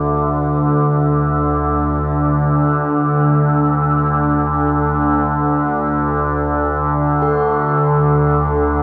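A resonant, up-front drone of sawtooth and sine tones emerges with a slow attack into a dark, ominous dark ambient passage, its moving overtones sweeping through a low register from D2 to D3 under chorus and its own reverb. Far behind it, a bronze singing bowl struck with a wooden striker rings a bright, metallic A4 with slow beating and an airy shimmer reverb, lending a meditative edge to the unease. Both parts sustain throughout this 8.8-second fragment of a longer piece, bathed in a huge, wet ambient reverb.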